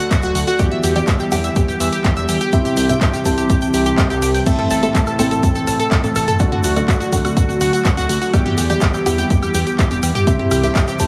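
A punchy electronic kick sits up front in a straight 4/4 progressive house groove at 124 BPM, joined by a deep house kit with dark hats, handclaps and crash, a grainy tube shaker in the background, and electronic toms, congas and woodblock that enter at 4.6 s. A fat, detuned analog bass, a bright, round analog pluck playing chorused arpeggios with tape echo, and stabs from a worn, intimate grand piano with audible action noise all pump with sidechain. An airy, breathy pad holds sustained chords in the background over a D, Em7, C and Am progression, giving this expansive, emotional cut from a longer piece a small-room ambience.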